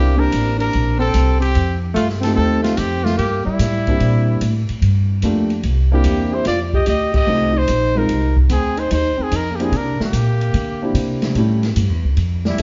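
A woody, thumpy upright bass sits up front in this playful, sophisticated slice of small-group swing and bop, its gut strings plucked through a swung 4/4 groove. Above it, a trumpet with light vibrato carries the melody in a punchy jazz style, while a dark alto saxophone traces a second line in subtone, with scooped notes and a distant, roomy placement. A concert grand piano with deep bass and a natural tone supplies the accompaniment through dominant-flavoured changes, and the whole band hits an accent together at 7.1 seconds. An acoustic jazz kit joins at 0.3 seconds, mixed low, with dark, smooth cymbals, a medium-tuned snare and a boomy kick, its top rolled off as though heard in a small room. The ensemble is heard from further back in a large studio with moderate reverb and a soft, mellow top end, and the recording is cut from a longer piece.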